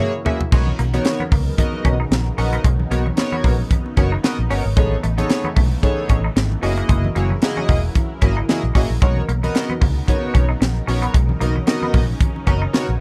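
Dark and dry, this feel-good, danceable early-eighties boogie funk excerpt in B major at 113 BPM opens with a half-second drum fill from an up-front, tight kit with a high-tuned snare, played alongside a glossy chorused polysynth and a lush detuned unison pad with phaser sitting in the background. A bright, twangy clean electric guitar riff with subtle chorus enters at 0.3 seconds, and at 0.5 seconds a round, punchy foam-muted fingered bass settles in together with very quiet, low-tuned ringing congas over a swung sixteenth groove moving through Bmaj9, Amaj9#11 and F#13.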